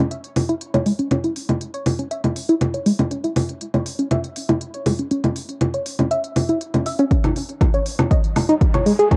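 Melancholic yet driving, this clip of melodic techno in C# minor runs at 120 BPM in a straight 4/4 and works as one continuous build-up. A tight, nasal sawtooth synth carries the arpeggios from G#3 to E5 up front, its detuned tone thickened by chorus, pumped by sidechain and trailed by tape echo, while a filter sweep runs across its pluck for the whole passage. Smooth electronic hi-hats, congas and woodblock sit up front alongside it, their layered patterns also pumping against the sidechain. A punchy electronic kick drum arrives at 7.1 seconds as the loudest element, and a very quiet riser slips in at 7.9 seconds to push toward what comes next. The drums carry a cassette-tape grit from being re-recorded in a small room, and the whole cut has the feel of a home recording on cassette with light reverb.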